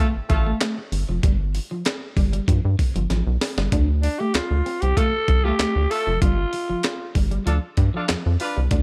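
A dry funk recording with a driving, hypnotic feel, built on a compressed, gritty sampler-style breakbeat kit with a thumpy kick, handclaps and hi-hat, and a rubbery, hollow square-wave bass that sits dark and up front. A slightly broken-up electric guitar carries a picked riff with subtle chorus, while a distant, roomy horn section plays a brief second line at the start and returns at 5.0 seconds. After a drum fill, a raspy, breathy alto saxophone steps forward with a growling, vintage solo from 4.0 to 7.1 seconds.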